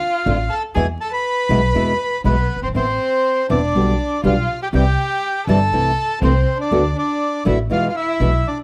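Tango in A minor at 121 BPM in 4/4, this sultry, dramatic fragment of a longer piece moves with a rubato feel. A reedy bandoneon carries the melody up front from the start, joined by a single bowed violin playing a soft-attacked second line beneath it with vibrato and expressive portamento. From 0.3 seconds, a full-bodied, fingerpicked nylon-string guitar supplies the accompaniment in a deep classical style, its finger squeaks audible up front, while a woody, dark pizzicato upright bass anchors the low end. The harmony travels from Dm and E through Amadd9, G/B, C and D6 before settling back on E. Moderate studio reverb lends the warm ensemble some space, and a layer of vinyl crackle gives the recording an aged character.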